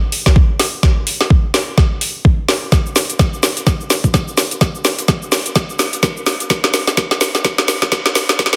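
Swung sixteenths drive this swaggering, gritty house fragment, where an overdriven garage drum kit of woody snare, metallic hi-hats and shaker sits up front beside a knocking electronic kick that enters at 0.3 s, both lightly reverberated, as the whole passage works as a build-up and drum fill under a filter sweep in a dense, heavily limited modern master.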